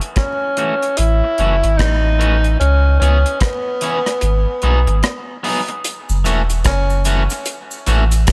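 A swung, unhurried dub reggae groove rides on a dry drum kit of tight kick, hi-hat and rim click, joined at 1.0 seconds by a round sine sub bass sitting up front, in this spacious, meditative passage cut from a longer piece. A tenor saxophone with light vibrato carries the melody, its distant, roomy tone darkened by a low-pass filter and trailed by dub echo, while a twangy, slightly broken-up picked electric guitar accompanies through spring reverb, filtering and echo of its own. A filter sweep runs under the opening section, a break arrives at 4.2 seconds, and a tube-shaker cabasa enters far in the background at 5.8 seconds as the chords move from F#m7 through C#m7 and G#m7 back to F#m7.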